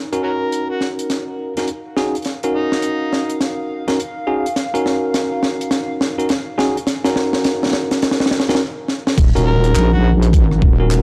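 Dry, gritty hardware grain colours this swaggering glitch hop excerpt in Eb minor at 104 BPM with a swung sixteenth feel, where a warbling, nostalgic pad with chorus, phaser and reverb sits in the background, bell-like tine electric piano stabs pump through a low-pass filter and tape echo, a crisp, airy fusion kit with a high-tuned snare, handclaps and rim clicks rolls through the build-up, and an overdriven jazz harmonica with tongue slaps and scooped notes takes a solo, before a break at 8.6 s gives way to a drop at 9.2 s, where a heavy, saturated wobble bass and a knocking, layered electronic kick arrive.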